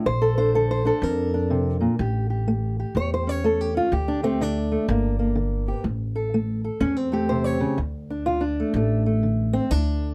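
A fingerpicked, ladder-braced acoustic guitar carries the melody in this brooding, smoky acoustic country blues excerpt, its boxy tone and old strings giving it a worn, dark character. Beneath it, a pizzicato upright bass with steel strings adds a woody low line from 0.1 s, and both instruments sit up front in the sound. The tune moves at 124 BPM in 4/4 with a swung eighth-note feel, in D minor, passing through chords such as Bbmaj7, A7, Gm and a tense A7#9. At 7.8 s the music shifts into a new section where the guitar takes a solo, returning to a bare D5 chord. The recording is close and detailed, with little reverb, so the intimate, small-ensemble playing comes through plainly.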